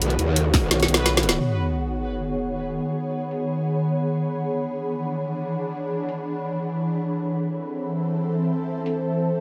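Dark technical drum and bass in G# phrygian, cut from a longer piece, unfolds in free time with a mechanical, futuristic mood as a tense, wave-folded swarming drone holds sustained chords throughout beneath an ethereal, detuned airy pad texture, both pumping under sidechain and bathed in their own reverb over a lush hall. Up front, a saturated, wobbling growl bass snarls through the opening 1.4 seconds beside a tight electronic kick, while a kit with a woody snare and bright, filtered hats runs a drum fill into an impact at 1.4 seconds. A distant, roomy brass ensemble adds a brief delayed stab in the background, and a sub drop falls with the impact before the drums return only in scattered hits over chords moving from G#m through E7 to Am.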